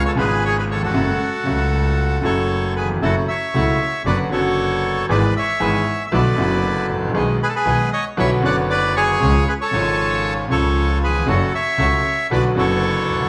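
This tango excerpt in F# minor carries a nostalgic, passionate mood, moving at 116 BPM in 4/4 with a loose, rubato feel. A reedy, bright bandoneon sits up front and carries the melody, while a bright, brilliant grand piano with a smooth, vintage tone and long sustain supports it with accompaniment. Underneath, a single bowed double bass adds a biting, earthy line with light vibrato. From 3.0 seconds a second bandoneon joins in the background with dark, airy stabs. The harmony circles around F# minor and B minor colors, turning on C# chords. The band sounds as if it is playing live together in one large studio, bathed in a wet reverb, and the passage is cut from a longer piece.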